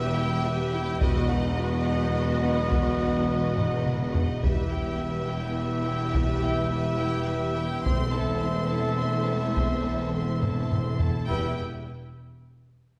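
Opening on lush bowed strings, with violins carrying the melody over a background second line, very quiet violas, a portamento-tinged string section, expressive cellos and close double basses holding a low E, together with very quiet horns, dark, distant trombones and mellow trumpet stabs, this dramatic, relentless epic orchestral film cue in E harmonic minor at 70 BPM in 6/8 adds hard-stick taiko drums at 1.0 s, with drum fills at 3.6 s and 10.4 s, sparse dry timpani hits, and a wet scoring-stage reverb that sets the ensemble further back.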